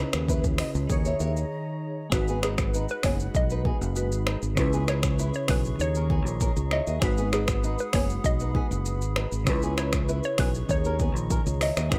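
Afrobeats in a mellow, hypnotic groove, built on an up-front, overdriven electronic drum kit with deep kick, metallic hats, finger snaps, rim clicks and shaker, alongside a growly, punchy fingered electric bass. Glassy digital keys with chorus, a dark fingerpicked flamenco guitar riff with tape echo and audible finger squeak, and airy sustained chords from a small flute group with vibrato fill out the dry mix. After a short break at 1.5 seconds, a bouncy, warbling square-wave pluck with chorus and tape echo enters at 2.4 seconds to carry the melody.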